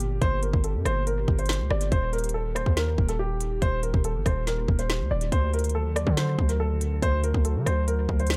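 Dark and cold, this short drill cut from a longer hip hop piece moves at 141 BPM with a half-time feel, its chords shifting from Gm to Eb to D within an echo-heavy digital ambience. A mellow, shadowy baby grand piano carries the melody through dub echo, while a glassy, warbling FM pad with ensemble chorus and built-in reverb sustains vintage, ethereal chords in the background. Up front, a heavy, aggressive distorted 808-style bass with a noise layer and fast, decaying attack sits beside an electronic drill kit of hard-clipped kick, woody snare, rim click and crisp hi-hats.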